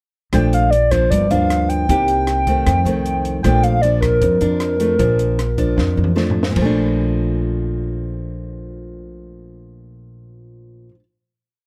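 Sophisticated and romantic, this short, dry bossa nova piece sets a pure, round sine lead, treated with chorus and vibrato, singing a motif-based melody up front over a fingerpicked nylon-string guitar's thumb bass and syncopated plucked chords, a woody, growly upright bass plucking a two-feel root-and-fifth line, and a dark, smooth cocktail drum kit with a high-tuned snare keeping a soft groove, until a drum fill at 5.8 seconds leads into a final chord at 6.6 seconds that the guitar and bass hold, the bass fading at 10.9 seconds and the guitar ringing until 11.0 seconds.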